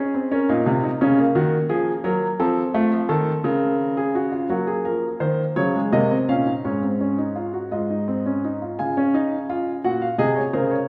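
A clear baby grand piano opens this short excerpt of a baroque-style three-part fugue in Bb minor, moving in a driving, serious 6/8 at 57 dotted-quarter beats per minute across a range from Ab2 to Ab5. The piano's open, up-front tone rings in the wet reverb of a recital hall. The harmony passes from Bbm through Ebm and F7, reaches Absus4 at 6.6 seconds and Ab at 7.7 seconds, and turns to Db and Gb/Bb from 8.8 seconds until the piece breaks off at 10.9 seconds.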